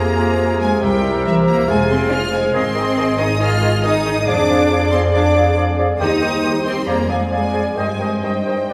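A classical orchestral passage, urgent and dramatic, cut from a longer piece and moving at a brisk pace in a minor key. A rich, lush studio violin section carries the melody high in the background, while a clear, close symphonic violin section shares the upper register as a second line. A clarinet, an oboe and an airy flute ensemble add further second lines, all set back in the mix. A distant viola section and a very quiet bassoon fill the accompaniment, a dark French horn section holds soft sustained chords, and a bright, ringing concert harp plays arpeggios across a broad range. An intense cello section and a smooth double bass section anchor the bass, sounding louder than the other parts, and the whole ensemble plays throughout the 8.7 seconds in a wet recital-hall reverb.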